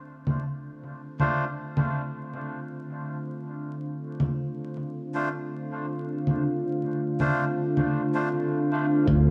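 A deep, detuned sawtooth pad holds a moody Dm7 chord under a filter sweep in this hazy, spacious ambient dub fragment at 80 BPM in D minor, joined at 0.3 seconds by muffled, sampler-style congas trailing dub echo and at 1.2 seconds by reedy, nasal melodica stabs through a low-pass filter, all washed in huge reverb and vinyl crackle until a growly, up-front fingered bass and a thumpy background kick arrive at 9.1 seconds.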